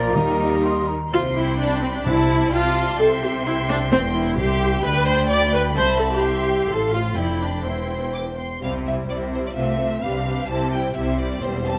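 Heard up close in a recital hall with moderate reverb, this urgent, dramatic excerpt from a quick classical-period orchestral movement in C major moves at 129 BPM in a straight 2/4. A brief opening flourish gathers an airy, hollow flute, a roomy oboe, a mellow, barely audible clarinet, a very quiet bassoon and dark French horn chords, all gone by about 1.1 seconds, while round, soft-mallet timpani sound in the background until 2.5 seconds. Throughout, an expressive, vibrato-rich violin section carries the melody over a sul tasto second violin line, a focused viola accompaniment sitting up front, and a bass of lush, distant cellos and smooth, even double basses.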